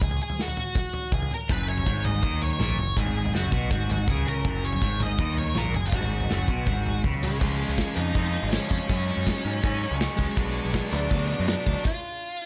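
Jangly and wistful, this short indie rock excerpt in F# major drives at 162 BPM, with a dark octave-fuzz lead guitar carrying the melody through digital delay over a growling overdriven bass and a big, boomy up-front drum kit with bright cymbals, while a bright overdriven guitar riff with spring reverb and a barely audible twangy twelve-string join at 1.5 seconds, a shimmering vintage string machine and grainy egg shaker slip in very quietly at 10.4 seconds, and the band stops at 11.9 seconds, leaving only the lead guitar to ring out in a small room.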